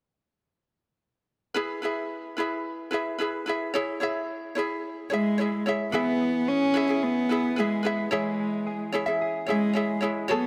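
At a steady 110 BPM in straight 4/4, this heartfelt, easy-going pop fragment from a longer piece opens at 1.5 seconds with a bright, light ukulele fingerpicking an accompaniment up front in E major, moving between E and C#m. At 5.1 seconds a single bowed cello takes the melody, its dark, woody tone carrying vibrato and a soft attack, placed close to the listener and trailed by digital delay. From 5.9 seconds, as the second section begins, a clean electric guitar recorded direct adds picked arpeggios in a lower register, its compressed, warm sound colored by analog chorus and digital delay and sitting further back in the mix. The harmony keeps cycling between E and C#m throughout, giving the piece a gentle, unhurried sway. A moderate plate reverb with a long tail surrounds the whole arrangement in a soft sense of space.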